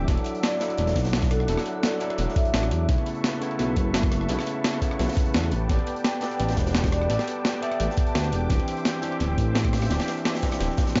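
Dreamy and lush, this liquid drum and bass excerpt at 171 BPM in E minor sets a barky, overdriven tine electric piano through analog delay over a detuned, chorused analog pad with vintage 12-bit sampler character and sidechain pumping, an up-front smooth sawtooth synth bass, a thumpy electronic kick re-recorded in a large room, a gritty, compressed sampler-style breakbeat kit with rim clicks and tape echo, and a dark, saturated second breakbeat kit tucked in the background, while a ringing, close-miked vibraphone with medium mallets carries the melody from 0.4 to 2.6 s and again from 6.0 to 8.2 s across suspended ninth chords, in an echo-heavy mix capped at 7.6 kHz.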